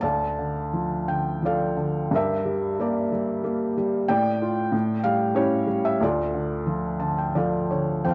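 Sunny and warm, this short classical fragment in D harmonic minor has a lone felt-muted upright piano, soft, mellow and intimately close, drifting in a rubato 3/4 around 82-96 BPM through Dm, Gm and A7 before a brief fill at 6.7 seconds, all heard in a moderate recital-hall reverb and coloured by the warbling pitch drift of worn old cassette tape.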